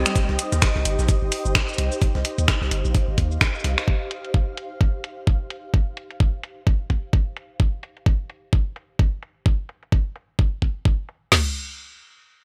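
A swung 16th-note groove at 129 BPM in 4/4 drives this cool, clinical minimal techno piece in C minor, where two overdriven, up-front electronic garage kits (one with a knocking kick, woody snare, crash and toms, the other with metallic hats, finger snaps and shaker under a filter sweep) run until about 11.2 and 11.4 seconds, while a deep, punchy sine sub bass with a pitch-drop attack and a bright, bubbling sawtooth texture with random filter steps pump in the opening moments beside a gritty, compressed sampler-style breakbeat kit with a high-tuned snare, and an ethereal, mellow detuned pad with a moving notch and ensemble chorus fades out by 7.6 seconds, all set in light reverb with a bright 1980s-style digital sheen.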